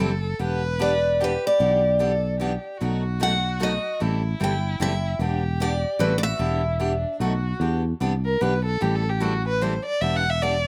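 Acoustic string swing in E minor at 150 BPM in 3/4, swinging and bittersweet, with a bright picked steel-string acoustic guitar carrying the melody from 0.8 to 7.2 s, full of finger squeak and slapback echo, over a second, up-front picked acoustic guitar accompaniment with fresh strings, a growly, direct fingered electric bass, and a vibrato-rich bowed violin with soft attack and portamento that plays a second line before taking a solo from 7.6 s, all in a dry outdoor sound cut from a longer piece.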